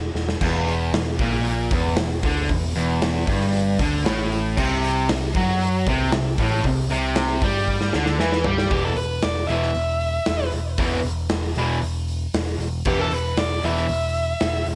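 This is a driving, heavy hard rock excerpt in a straight 4/4 feel, cut from a longer piece. A growly, punchy overdriven bass opens it, and the up-front gated 80s drum kit enters with a fill at 0.2 seconds, its punchy kick, medium-tuned snare and bright cymbals ringing in a stone-room ambience. From 0.4 seconds a bright overdriven semi-hollow guitar and a dark, sludgy distorted guitar, the latter sitting in the background, play the riff together over an E minor chord. At 4.6 seconds the harmony moves to C5, and a tight, double-tracked distorted guitar joins the riff in the background until a drum fill carries the music to 8.7 seconds. There, over E5, a dark, bluesy lead guitar steps up front for a solo, its distortion trailed by tape echo. The whole mix carries light reverb and a small-room ambience.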